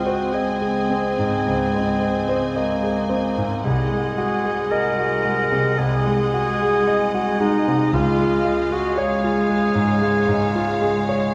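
A clear, up-front concert grand piano carries the melody in this passionate, lyrical classical passage cut from a longer piece, its deep bass and short sustain moving in rubato over chords that settle from Ab/Db through Ab7/C to Db at 7.9 s. A rich, lush violin section shares the melody with vibrato, while a solo clarinet, a distant second violin section, a hollow, airy small flute group and a mellow, roomy oboe weave second lines; a background viola section and a soft-attack bassoon supply accompaniment above an intense cello section and a smooth, very quiet double bass section, which drops out at 8.9 s. Very quiet, close and dry timpani enter at 7.9 s, and a wet scoring-stage reverb surrounds the orchestra.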